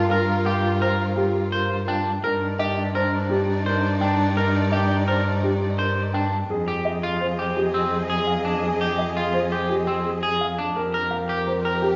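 Urgent yet meditative, this excerpt of minimalist classical pattern music at 169 BPM in 6/4 and F dorian sets a dark, boxy grand piano melody over slightly broken-up, twangy electric guitar arpeggios and a clear, close bowed cello bass, while a lush symphonic string section holds sustained chords and a soprano saxophone with classical vibrato carries a second line in the background, within a wet recital-hall reverb as the harmony moves from Gm7 through Ebmaj7/G to Fm9 at 6.5 seconds.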